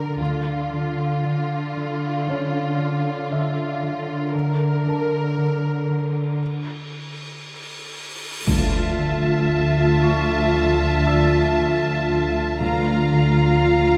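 Tense and ominous, this slow 58 BPM cinematic suspense cue in D harmonic minor, cut from a longer piece, sits on a Dmadd9 chord as a distant, lush violin section carries the melody over a thumb-plucked, ringing harp riff and expressive, close cellos, with rich bowed double basses sounding briefly at the start, an intimate piano with audible action noise adding background texture from 2.3 seconds, and a huge, dark cymbal swell rising through a break from 6.7 seconds into an impact at 8.5 seconds, where the basses return alongside a smooth, even second violin line, intense violas, warm French horns holding sustained chords and hard-mallet timpani, all set in the wet reverb of a scoring stage.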